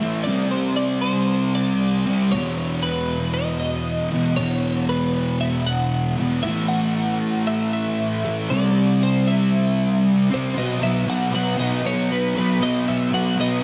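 A wistful, hazy rock excerpt opens with a dark, double-tracked fuzz guitar riff up front beneath a bright, clean twelve-string electric melody shimmering with analog chorus and delay, both playing throughout the 13.6 seconds in a dreamy mix soaked in plate reverb, with the harmony shifting at 10.6 seconds.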